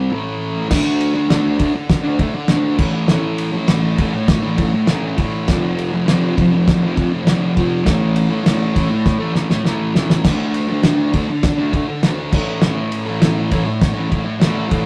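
A rough rehearsal-room recording with a moderate small-room reverb frames this gritty, swaggering garage rock excerpt in A minor, moving at 101 BPM in a straight 4/4. A thick, dark fuzz guitar, double-tracked and up front, opens alone with a distorted, picked riff on A5 before a cloth-damped, thuddy acoustic drum kit enters at 0.7 seconds with a fat snare, tight kick and dark, rolled-off crash and ride cymbals. The riff cycles through A5, D5 and F5 power chords, and the drums play a fill from 9.0 to 10.2 seconds before the guitar returns to D5.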